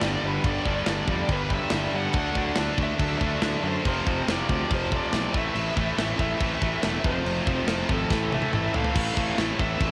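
A straight 4/4 pulse at 141 BPM drives this dark, epic heavy metal cut in A minor, its chords moving G, D, F, Am, F and back to Am, with a tight metal drum kit up front on crash, kick, snare and toms, and a drum fill at 8.1 seconds. Three picked, bright rhythm guitars sit in the background playing riffs, one overdriven, one scooped and double-tracked, and one heavy high-gain, while a growly fuzz fingered bass anchors the low end and a warm high-gain lead guitar carries the melody. The home cassette recording gives the guitars a tape-worn grain, and a light reverb hangs over the whole fragment, which is cut from a longer piece.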